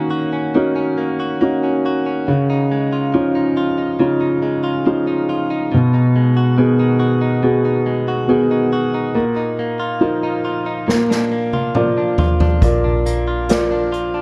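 An open, deep-bodied concert grand piano and a clean, compressed electric guitar picking delay-washed arpeggios begin this melancholic, emotional pop ballad excerpt at 70 BPM in 4/4, moving through Ebm7, Dbadd9 and Abm7/Cb to a Bbsus4 that resolves to Bb, as a roomy acoustic drum kit played with bundle sticks enters with a fill at 10.9 seconds and a dark, round, foam-muted fingered bass joins on a low Bb at 12.6 seconds, all in a lightly reverberant studio ambience.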